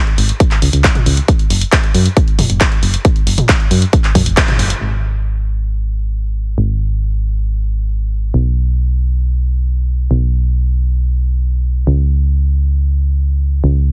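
A straight pulse opens this euphoric, soaring uplifting trance clip, cut from a longer piece: an up-front analog drum machine with handclaps, hi-hat and toms, and a layered, tape-warm electronic kick that enters at 0.4 seconds. A round, dark FM bass with a fast attack and decaying notes pumps against the sidechain. After a band accent at 4.4 seconds, the kick drops out at 4.5 seconds and the drum machine stops at 4.8 seconds, leaving the bass to carry on until 13.9 seconds. The whole sound has a heavily compressed, radio-like digital ambience.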